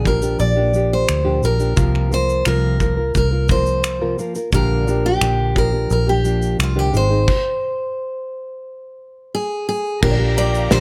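A straight 4/4 groove at 87 BPM carries this easy-going, sunny acoustic pop piece in Bb mixolydian, with a loose indie kit of kick, snare, shaker, finger snaps and crash in a pumping small room beside a round, punchy, foam-muted fingered electric bass. Up front, a picked dreadnought steel-string guitar sings the melody with audible finger squeak while a thumb-plucked classical nylon-string guitar accompanies, moving through Bb6, Fsus4/C and Ab before a stop at 7.3 s. At 10.0 s a mellow, woody upright piano enters in the background with a lush bowed string section, in light reverb, as the excerpt is cut from a longer piece.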